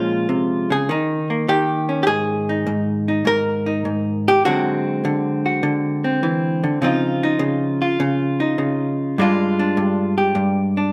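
Swung eighth notes in 4/4 carry this sophisticated, playful solo jazz passage, cut from a longer piece, played on a vintage hollow-body electric guitar. The tone is dark, clean, picked and compressed, sitting up front in a large studio with a moderate reverb. A brief opening on Bbm7 and Eb7 gives way at 2.1 seconds to a longer stretch that moves through Absus2, D7#11 and Dbmaj9.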